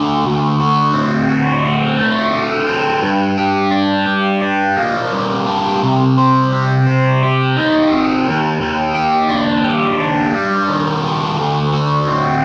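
Moderate studio reverb surrounds this mysterious, trippy rock fragment at 86 BPM in straight 4/4 and D phrygian dominant, where a lone double-tracked fuzz guitar, distorted, compressed and up front with a phaser coloring its picked lines from D2 to C5, carries the solo over D7, Gm, Cm and Ebmaj7 before landing back on D7 at 11.4 seconds.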